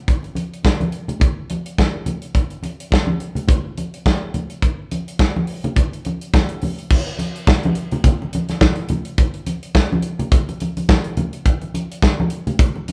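Danceable and celebratory, this disco groove with a light 16th-note swing puts an up-front acoustic drum kit of punchy kick, medium-tuned snare, hi-hat and bright crash cymbal ahead of quieter low-tuned, thick-skinned, damped congas played with soft hands, all captured as a band playing live in one room with a moderate large-studio reverb as the passage moves into a new section at 6.9 seconds.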